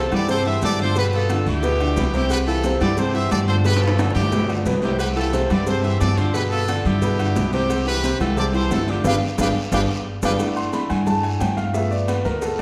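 A brilliant horn section with light vibrato opens this sunny, joyful salsa cut together with a clear concert grand piano and a woody, thumpy upright bass played pizzicato and sitting up front, while congas, agogo bells and timbales, guiro, maracas and a tight, very quiet cowbell fill in the background almost at once. The tempo is a brisk 178 BPM in a straight 4/4, with the harmony swinging between C6 and G7. In the percussion, the high-tuned congas sound thin-skinned and vintage, the metal-shelled timbales and agogo bells ring out, the guiro is raspy and distant, and the maracas are grainy and mellow. Drum fills punctuate the groove, and the full band hits an accent at 9.0 seconds before the horns drop out. From 10.4 seconds the piano takes a solo over a G13 chord, its boxy tone carrying deep bass, long sustain and audible action noise. The whole ensemble sits in a wet recital-hall reverb, and the passage is cut from a longer piece.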